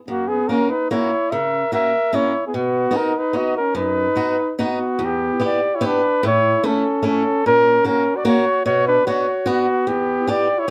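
Flugelhorn, trumpet and picked acoustic guitar all begin together at 0.1 s in this festive, jolly alpine folk piece for a small dance band, a short cut from a longer performance. The flugelhorn carries the melody up front with a warm, smooth top and light vibrato, played in a classical style. Beneath it, a mellow trumpet adds a second line, also with vibrato and classical poise. The boxy, swing-style guitar, placed forward in the mix, supplies picked accompaniment in a straight 3/4 at 147 BPM in B major, tuned to A4 = 444 Hz. A moderate small-room reverb gives the trio a close, intimate setting, and at 5.0 s the music moves into a second section, where the harmony travels from Em7 through A and F#/A# to Bmadd9 before returning to Em7.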